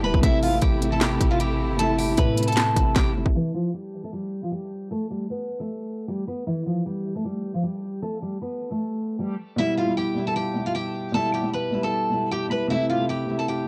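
Dark and menacing, this half-time trap cut at 154 BPM in E phrygian opens with a hard-clipped kick, sharp snare, crisp hats and handclaps over a boomy, sine-like 808 bass, while a lush, bowed string section with vibrato and portamento sits in the background. A full-bodied, picked steel-string acoustic guitar carries the melody throughout with tape echo, joined by an intimate, boxy concert grand piano with audible action noise. After 3.3 seconds the drums, bass and strings stop for a filter-swept passage, and the piano returns at 9.6 seconds, all within a dry, gritty room sound with transformer saturation.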